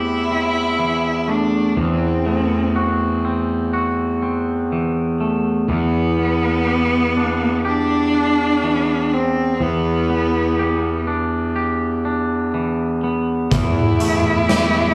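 Post-rock in E minor at a slow 61 BPM, this brooding, cinematic fragment sets a bright, bowed cello melody with vibrato over clean, twangy fingered guitar arpeggios and a fuzzy, overdriven picked bass holding E2, moving through Am7/E, F#m7b5/E and Em7 in a live studio room with moderate reverb before a punchy big rock drum kit enters at 13.5 seconds on an A7(no3)/E chord.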